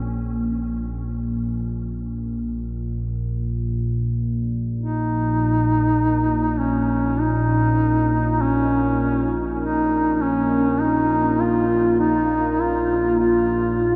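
A solo duduk with a soft attack, vibrato and a smooth top enters at 4.8 seconds, singing a folk-style melody through a trail of delay. Beneath it, an evolving analog drone of sawtooth and pulse-wave tones, shaped by pulse-width modulation, slow attack and long release and thickened with chorus, sustains low from the very start. A huge, wet ambient reverb surrounds this unsettling, ominous dark ambient passage, which is cut from a longer piece.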